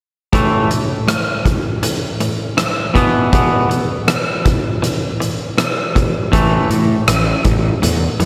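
A big arena sound with a moderate, lush hall reverb frames this bittersweet, anthemic excerpt of quiet-loud alternative rock at 80 BPM in a straight 4/4. Up front, a twangy, clean electric guitar plays picked arpeggios through spring reverb and slapback echo over A5 and Bsus4 chords, while a dark, smooth acoustic drum kit with a punchy kick keeps time on hi-hat, kick and rim click. At 6.3 seconds a fuzz-drenched, growly picked bass enters with bright overdrive beneath them.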